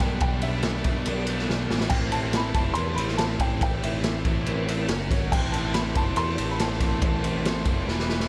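Carefree yet wistful, this short indie rock excerpt moves at a straight 141 BPM in 4/4, cut from a longer piece. A worn, woody upright piano carries the melody with a warm, present tone, slightly detuned and trailing a tape echo. Behind it, two electric guitars play riffs in the background: one biting and overdriven, the other a raw garage part with overdrive and a subtle chorus. A growling picked bass, bright and amped with its own overdrive, anchors the low end. The raw garage drum kit sits up front with a punchy kick, medium-tuned snare, dark crash and ride cymbals and a pumping, gritty small-room character, adding drum fills at 1.5 and 7.9 seconds as the chords move from G through Am and F#5 to close on E5.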